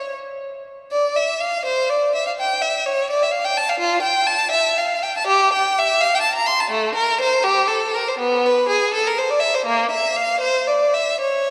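A lone bowed violin opens this short cut from a longer baroque-style suite movement, its rich, focused tone sung with vibrato and placed up front as it ranges from A3 to C6. The mood is flowing and introspective, moving in a rubato 6/8 at about 72-87 BPM in dotted quarters, with tuning at A4 = 439 Hz. A wet church reverb with a 3.5-second decay surrounds the single player through to 11.5 seconds.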